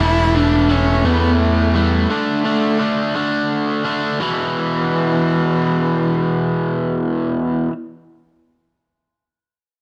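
A large studio's moderate reverb, about 1.4 seconds long, surrounds this brief, brooding rock excerpt in 6/8, moving at a slow 57 beats per minute counted in dotted quarters with a straight feel. An overdriven electric guitar sits up front with a bright, compressed, picked riff, while a growling picked electric bass, overdriven and amped, anchors the low end before dropping out at 2.1 seconds. Over them, a single bowed cello carries the melody in a close, smooth, even voice with vibrato, trailed by tape echo. The harmony moves from A5 over E to D5, then settles on E5 as the piece shifts into a second section. The cello stops at 7.2 seconds and the guitar rings on until 7.7, leaving a cinematic feeling.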